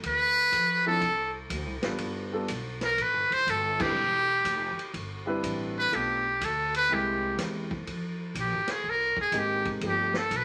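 A trumpet with a metal mute leads this short, swinging jazz excerpt, its buzzy, brilliant yet thin tone sitting up front with a light vibrato and a soft attack. It carries the melody in a small-group swing and bop setting with a moody feel, and from 7.9 seconds it takes a muted solo over a minor harmony. Beneath it, a pizzicato upright bass with steel strings sounds woody, growly and thumpy, and a vintage drum kit plays crash, ride, hi-hat, a punchy kick and a medium-tuned snare with a rolled-off top. A warm grand piano enters at 0.9 seconds to comp chords, natural in tone and placed close. The whole band hits an accent together at 3.7 seconds. A short, wet studio reverb and a layer of vinyl crackle give the recording an aged character.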